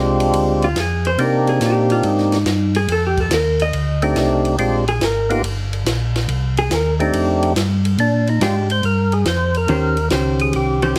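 Heavily compressed with a radio-like sheen and a moderate club reverb, this greasy, swinging soul jazz organ trio excerpt opens on a fat, lightly overdriven tonewheel organ melody with percussive attack, vibrato, slow rotary speaker and plate reverb, over a mellow, round organ bass line colored by chorus vibrato and its own slow rotary spin. A dark, clean, picked hollow-body electric jazz guitar enters at 0.6 seconds and takes a solo up to 8.0 seconds before the harmony shifts into a new section. A compact acoustic cocktail drum kit sits lower in the mix, dry and natural, with dark cymbals, a high-tuned snare and a tight kick.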